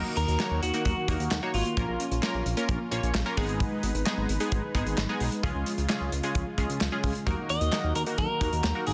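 A dense, heavily limited modern mix with light studio reverb opens this short synth-pop excerpt, cool and melancholic in mood, moving at 131 BPM in a straight 4/4 in Eb minor. A tight-kicked acoustic kit with a medium-tuned snare, hi-hat and handclaps sits up front in a small room, while a chorused synth bass with a glossy, retro pulse-wave tone holds the low end. Above it, a punchy, bright polysynth built from detuned sawtooth and ring modulation plays funky chorused comping with an evolving filter sweep, backed in the background by a bold, airy analog pad with a brassy edge, a noise layer and a moving notch. A very quiet, dark pluck of round, full-bodied tone adds gentle decaying arpeggios. A clean, picked electric guitar carries the melody through digital delay, heard from 0.2 to 2.9 seconds and again from 7.5 seconds, over a progression of Ebm, Bbm, Abm and Db that returns to Ebm.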